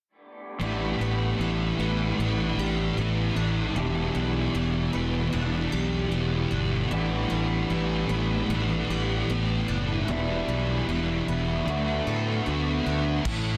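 Shoegaze and dream pop rock at 76 BPM in a straight 4/4, this wistful, blissful passage is cut from a longer piece and drifts through A9sus4 and Em7 before touching D6. A thick, dark fuzz guitar sits up front with distortion and ensemble chorus, carrying a riff alongside an electric guitar through a small old amp whose slightly broken-up, lo-fi tone is compressed and washed in reverse reverb. Beneath them, a picked twelve-string acoustic guitar plays shimmering, octave-doubled arpeggios in the background, its boxy parlour sound thickened by ensemble chorus and slapback echo. A growly fuzz fingered electric bass, bright and overdriven, holds the low end up front from 0.6 seconds. The loose indie drum kit appears only at 13.3 seconds with a crash cymbal and tight kick, shortly before the guitars stop at 13.6 seconds. The mix places everything in a small room ambience with a dense, heavily limited modern master.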